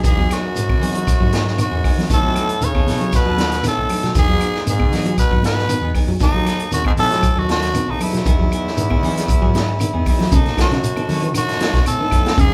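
A live-in-one-room studio sound with moderate reverb frames this joyful, hypnotic afrobeat excerpt at 117 BPM in B mixolydian, moving between Emaj9 and B7 as a raspy, gritty tenor saxophone carries the melody with vibrato over a brilliant bass trombone second line marked by scooped notes. Behind them, a slightly broken-up electric guitar picks arpeggios and a clean semi-hollow guitar adds stabs, while a dark, round hollow-body bass sits in the background. An up-front vintage drum kit with a tight kick and rolled-off top, joined by grainy shekere, ringing high-tuned congas and very quiet woody claves, drives the groove, with a drum fill at 9.8 seconds leading into a new section at 10.3 seconds.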